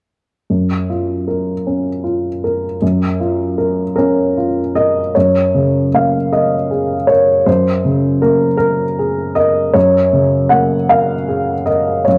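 A dark, woody upright piano, mellow and intimate with its action noise audible up front, plays a melancholic, longing classical accompaniment in a rubato 6/8 at 52 BPM in dotted quarters, spanning Gb2 to Gb5 and tuned to A4 = 438 Hz, moving from Gbmaj7 to Gb at 5.1 s, with a vintage cassette-tape character, moderate spring reverb and small-room ambience giving this fragment of a longer piece the feel of a home recording.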